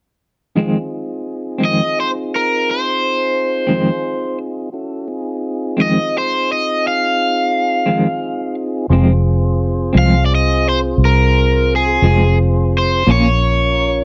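A dry, close 1970s-style studio sound frames this soulful, mournful slow blues in F minor, moving at 58 BPM in a straight 12/8 from Fm7 to Fm and then Bbm. A clean electric guitar with tremolo lays down accompaniment alongside a lightly overdriven tonewheel organ holding sustained chords through a slow rotary speaker with audible key click, while a bright, cranked stack guitar enters at 1.7 seconds to carry the overdriven, picked melody up front. At 8.9 seconds a dark, foam-muted fingered bass arrives with a round, punchy tone, deepening the close of this excerpt from a longer piece.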